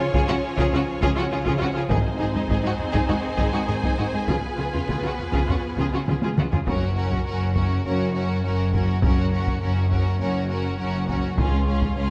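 Set on a moderately reverberant scoring stage, this adventurous, majestic cinematic orchestral excerpt at 102 BPM in 4/4 opens in Db major, with lush bowed violins carrying the melody over a distant second violin line, smooth viola accompaniment, very quiet mellow French horn chords, an expressive string section holding chords until 6.7 s, rich cellos and clear background double basses on the bass, hard-stick taiko drums playing throughout, and a brief very quiet timpani note at 1.9 s, before a drum fill leads into a shift to F# major at 6.7 s.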